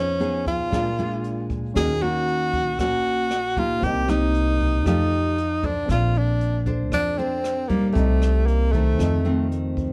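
A breathy tenor saxophone sits up front with vibrato and scooped notes, carrying a relaxed, breezy bossa nova melody at 116 BPM in Bb major over a progression that settles on Bbmaj9 at 5.9 seconds. Fingerpicked nylon-string guitar gives full-bodied accompaniment, with woody, thumpy pizzicato upright bass beneath and a very quiet, intimate baby grand piano with audible action noise. A distant, roomy brush kit with a boomy kick, hi-hat and rim click enters at 0.2 seconds in the background, all under light reverb in this short cut from a longer piece.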